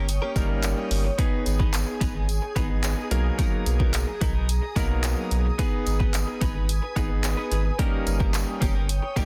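A punchy analog drum machine drives a straight dance-pop groove of kick, hi-hat and handclaps, with a jingly tambourine in the background and a deep sine-and-triangle sub bass with an octave pumping up front under sidechain. A bright, compressed clean electric guitar riff shimmers through lush chorus. An intimate concert grand piano with audible action noise enters at 0.4 seconds, also pumping, while a glassy, ethereal FM pad holds sustained chords in reverb, giving this dense, heavily limited excerpt an energetic, driving feel as it moves through minor and major-seventh harmonies.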